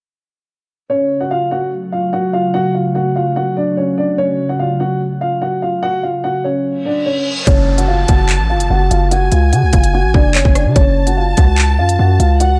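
Drill hip hop at 146 BPM in a half-time feel, this ominous, cold piece sits in F# harmonic minor over an F# minor chord. A dark, mellow concert grand piano carries the melody from 0.9 seconds, boxy and deep in the bass, run through a low-pass filter and digital delay, while a glassy, ethereal FM pad holds slow-blooming chords beneath it with ensemble chorus and its own reverb. A reverse cymbal and downlifter carry across the turn into the second half at 7.5 seconds, where a filter sweep moves over the piano and the full beat arrives. A hard-hitting 808-style bass lands punchy and saturated, with a fast attack and a noise layer on its sine tone, alongside an up-front electronic drill kit of hard-clipped kick, crisp hi-hats, handclaps and rim clicks with a tape-tinged edge. A woody, bowed chamber violin section adds a vibrato second line up high through digital delay, all wrapped in dark digital ambience. 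It is cut from a longer piece.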